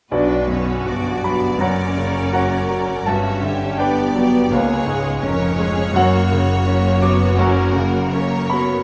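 A bright, up-front concert grand piano carries the tragic, passionate melody in B minor at a rubato 82 BPM, joined by a clear violin section with vibrato while softer violins with portamento trace a second line, a focused viola section accompanies, a very quiet mellow French horn section holds chords until 7.7 seconds, and distant, rich cellos and double basses supply the bass, all in a wet recital hall moving from Bm through F#, Gmaj7 and C#7 back to F# in this brief excerpt from a longer classical piece.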